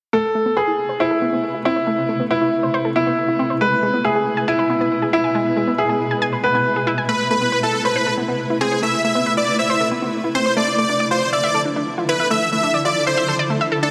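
A lush hall reverb gives this soaring, emotional trance excerpt a spacious, glowing sheen. A round, warbling analog pluck plays arpeggios throughout, its chorus and delay adding a vintage shimmer as a filter sweep runs across it from 0.1 to 13.9 seconds. Up front, a brilliant baby grand piano carries a second line with long sustain and tape echo until 7.0 seconds. At 7.1 seconds a huge, thick supersaw enters with the melody, its detuned unison layers and sub octave sounding dense and compressed under a trail of delay. The harmony moves through Amadd9, E and Dmadd9, giving the passage a yearning, uplifting pull.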